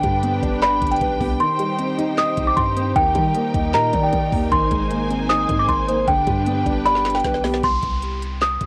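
A slightly out-of-tune, bell-like celesta carries the melody from the first moment, run through a low-pass filter and cassette-tape grit, over a dark, boxy concert grand piano with audible action noise, a lush bowed string section holding vibrato chords, a deep sine 808 bass and a trap drum kit. This menacing, hard-hitting trap cut moves at 154 BPM in 4/4 with a half-time feel in C minor, its harmony passing through G, Cm, Eb and Abadd9 before settling on a C5 chord. The electronic kit has a knocking kick, a woody snare, crisp hi-hats and handclaps, also coloured by tape, with the kick briefly muted and a drum fill closing the first section. At 1.0 seconds a soft, woody, clarinet-like synth lead enters in the background as a second line, treated with chorus, phaser and analog delay. At 7.6 seconds the strings and the synth lead stop and an electronic downlifter marks the short closing section, as the celesta, bass and drums play on. 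The sound is dry and close, with a lo-fi home-cassette character, and the clip is cut from a longer piece.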